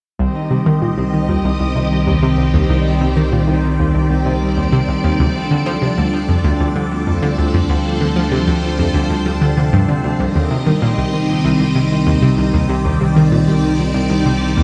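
A steady, straight 4/4 pulse at 96 BPM carries this cosmic, mysterious piece of sequencer-driven space music in C dorian, heard here as a short cut from a longer work. An analog pluck drives the low register with a round, ring-modulated riff, its fast attack and short decay given chorus and tape echo. Above it, a phased string machine holds swirling, vintage sustained chords that sit up front, while a concert harp adds fingerpicked, ringing arpeggios through its own tape echo. From 1.0 s an analog drone settles in as a warbling, evolving bass with a mellow pulse-width tone. The harmony moves from Cm to Dm at 5.2 s and back to Cm at 10.2 s, all bathed in a wet echo chamber reverb that leaves the mix heavy with repeats.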